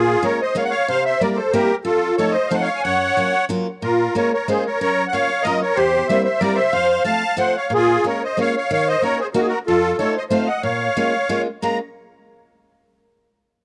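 Musette in Bb minor at 185 BPM in a rubato 3/4, this bittersweet, whirling fragment of a longer piece sets a reedy, shimmering musette-tuned accordion melody, placed up front in a boxy small-room sound, over a woody picked steel-string acoustic guitar accompaniment with old strings and an auditorium ambience, both playing throughout in a dry, close 1970s-style studio recording as the harmony moves from Bbm7 through C7, F7 and Gbmaj7 before resolving back to Bbm7.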